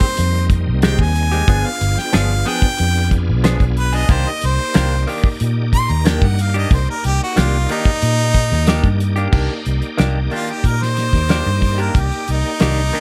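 A bright, close-miked harmonica opens this smoky, mournful soul blues excerpt, playing a jazz-style solo with light vibrato, soft attacks and scooped notes from the start until 9.3 seconds. Beneath it, a full, shouting tonewheel organ with key click, light overdrive, chorus vibrato and a slow rotary speaker holds the accompaniment. A twangy, compressed clean guitar, recorded direct, adds picked stabs colored by phaser and slapback echo. A dry 70s acoustic kit with a fat snare, tight kick, hi-hat and crash cymbal drives a straight-eighth feel at 92 BPM in 4/4, and a dark, round, foam-muted fingered bass sits up front from 0.2 seconds. In C minor, the harmony moves from Abmaj7 to G7b9 and settles on Cm9, and after the solo a new section carries on to the end of the excerpt in an intimate space with little reverb.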